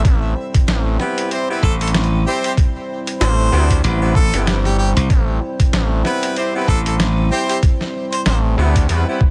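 Glitch hop at 95 BPM in A minor, this playful, funky clip swings its 16ths over a single Am7 chord, with a thumpy, pitched-down electronic kick sitting up front beside a gritty, tape-warm boom bap kit of hi-hat and medium-tuned snare. A saturated, aggressive synth bass with oscillator sync and ring modulation growls underneath, joined from 1.6 s by a punchy, glassy slap bass, while a deep, nasal analog pad holds detuned chords with chorus and sidechain pumping. From 1.0 s a bright pop-style horn section fires octave-doubled stabs through delay, and from 1.6 s a clear jazz harmonica solo with light vibrato and scooped notes carries the melody in a dry, close-sounding mix.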